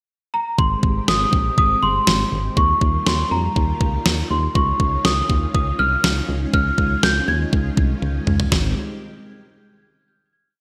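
Bright 1980s-style digital production bathes this short, wistful yet upbeat synth-pop piece at 121 BPM in Ab major in a lush hall reverb, opening with a worn, slightly out-of-tune celesta playing a delicate, bell-like motif from 0.3 seconds, with a subtle chorus and digital delay. From 0.6 seconds a full, vintage string machine holds soft sawtooth chords with ensemble chorus, a punchy, round FM bass pulses in eighth notes, and a clean 12-bit drum machine sits up front with a thumpy kick, fat snare and gated reverb. A drum fill at 8.0 seconds leads into a closing Abmaj7 chord that rings out to the end.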